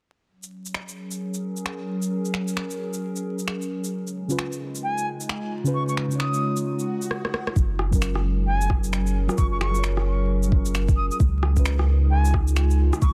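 Swung sixteenths from an electronic shaker, finger snaps and rim click open this melancholic, wistful future garage excerpt, where a warbling tape-like pad with phaser and sidechain pumping holds sustained chords, muted felt-like synth keys with 12-bit grit and delay enter at 4.3 seconds, a bright, reedy jazz flute with vibrato carries the melody through digital delay, and after an electronic swell and a drum fill, a round dub sub bass and an up-front electronic kick arrive at 7.6 seconds beneath a dense master dusted with vinyl crackle.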